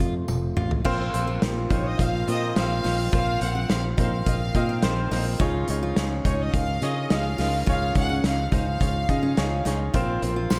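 Piano-driven pop in Bb minor at 106 BPM, dramatic and earnest and cut from a longer piece: a clear concert grand with slapback echo carries the accompaniment over a fretless bass with ensemble chorus and an up-front, punchy indie drum kit with dark cymbals, whose fill at 0.3 s brings a flash of jingly tambourine, while a tonewheel organ with key click sounds only briefly at the start, a full-bodied picked acoustic guitar riff sits in the background, a very quiet mellow French horn section enters at 0.8 s with a second line, and an earthy bowed violin section with light vibrato carries the melody from 1.7 s, within a big, arena-like concert hall reverb.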